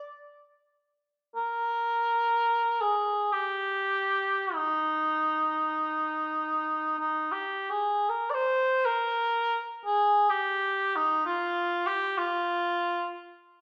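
Mournful and lonely, this brief classical excerpt in a free, rubato 3/4 drifting between 34 and 70 BPM features a solo cor anglais, tuned to A4 = 438 Hz, playing up front from 0.0 to 13.1 seconds with a warm, soft-attacked tone and light vibrato that still sounds distant within the wet stone room's 1.3-second reverb.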